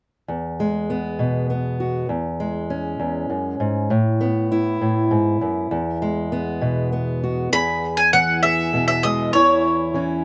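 The mandolin stands out, entering at 7.5 seconds with a woody, double-strung melody picked up front in a high register over the accompaniment. Beneath it, a fingerpicked steel-string acoustic guitar carries this nostalgic folk excerpt in E major from 0.3 seconds, moving through E, C#m/E and Asus2 at a gentle 66 BPM in a straight 6/8. The dry sound was captured outdoors, and the guitar plays until 10.2 seconds.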